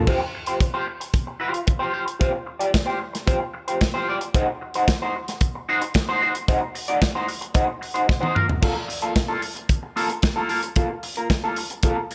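Disco at 112 BPM in a straight 4/4, driving and glamorous, with a dark, slightly broken-up electric guitar picking through a wah up front over chords moving from Fsus2 to a rootless D7b9 and then Fadd11/Bb. An acoustic studio kit sits just as close, with a tight kick, medium-tuned snare, hi-hat, crash and toms in a small-room sound, and it drops a fill at 8.1 seconds. Light studio reverb surrounds this short excerpt cut from a longer piece.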